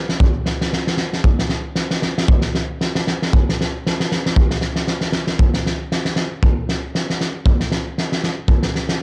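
A loose acoustic drum kit opens this restless, fiery Balkan folk excerpt at 0.1 seconds, its boomy kick and fat snare sitting up front in a pumping studio room and carrying a swung 2/4 feel. The kit carries the character of cassette tape, and the home recording keeps reverb to a minimum, so the drums sound close and dry. A second section begins at 5.4 seconds, and the kit plays on until 8.9 seconds.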